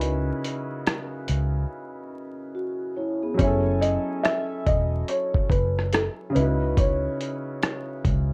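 From the first beat, a woody upright piano with long sustain, softened by cassette tape and a low-pass filter, plays this reflective, melancholic lo-fi hip hop excerpt at 71 BPM with a 16th-note swing. Alongside it from the start come a dark, round, foam-muted electric bass and a gritty sampler-style kit of thumpy kick, hi-hat and rim click, all three up front and circling C#m11 and F#m9. A mellow, metallic vibraphone rings briefly through analog delay at 2.5 seconds, and from 3.4 seconds a thick-felt upright piano carries an intimate melody with audible action noise, all wrapped in light reverb, vinyl crackle and warbling, worn tape.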